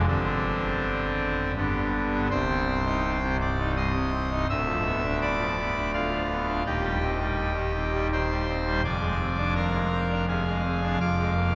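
Classical chorale-style music for pipe organ alone, grave and solemn in C minor at 82 BPM in 3/4, its brassy trumpet stop speaking up front with a bright baroque voicing and audible chiff across a range from C1 to F6, while a cathedral reverb lasting 6.1 seconds places the listener further back in the room as the harmony moves from Gsus4 and G into Cm, Bdim/D, Cm/Eb and Dm7b5/F in this 11.6-second fragment of a longer piece.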